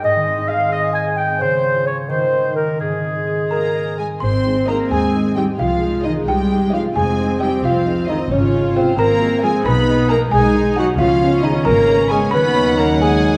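A playful, whimsical cinematic film cue in a lilting 6/8 at 88 BPM in Ab major, opening with woodwinds: a pure, very quiet flute, a warm oboe with vibrato and a mellow bassoon play together over ringing fingerpicked harp arpeggios, while a dark, distant clarinet carries on through the whole excerpt. At 3.5 seconds a woody, dry xylophone struck with soft rubber mallets takes the melody, joined by sul tasto rich violins and floating cellos. Violas and double basses follow at 4.2 seconds, then a very quiet, mellow French horn section holding chords, and finally a second, darker violin section adding its own melody line in the background. Harmonies drift from Ab through Fm7 toward C#7 and D#m, all bathed in a wet scoring-stage reverb that gives this quirky fragment, cut from a longer piece, a soft storybook glow.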